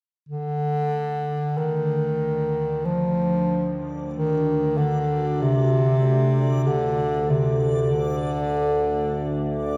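At a slow 48 BPM in a straight 4/4, this cavernous, unsettling dark ambient drone excerpt in D phrygian sets an up-front solo bass clarinet, classical in style and drenched in shimmer reverb and dub echo, over a resonant, chorused drone of moving overtones entering at 1.2 seconds, a reversed, dreamy granular texture fading in from the background, and a very quiet, detuned pad with a moving notch arriving at 5.5 seconds, all within an echo-heavy chamber.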